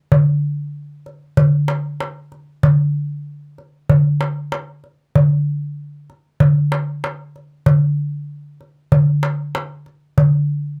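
Arabic percussion in a hypnotic, melancholic mood, moving at 95 BPM in a straight 4/4. A lone darbuka carries the whole piece, playing from 0.1 to 10.3 seconds. Its clay shell and natural skin give a small, high, warm voice that sits up front. The close, detailed miking and dry small-room sound bring out every stroke with intimate clarity. Cut from a longer piece, this brief passage unfolds as a single section.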